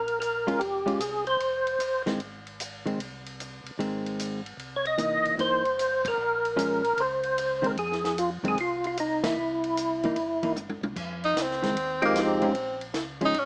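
A percussive tonewheel organ opens this smoky, bluesy soul jazz organ trio excerpt with a brief, fat melody phrase full of key click, colored by chorus vibrato and a slow rotary speaker. Beneath it, a mellow tonewheel organ carries a round bass line through its own slow rotary. A compact cocktail drum kit joins almost at once with a dry, natural sound, a punchy kick, a high-tuned snare and dark cymbals, swinging in 4/4 across hi-hat, ride, crash and toms, while an up-front hollow-body electric guitar accompanies with a clean, compressed, fingered tone. The lead organ returns at 4.8 seconds over a cycle of Bbm7, Fm7 and C7#9, with band accents punctuating the groove, and a drum fill at 10.6 seconds sets up a new section. There a bright, forceful tenor saxophone steps in at 11.2 seconds for a present jazz solo with vibrato, all under light reverb and a small-speaker character, as the clip is cut from a longer piece.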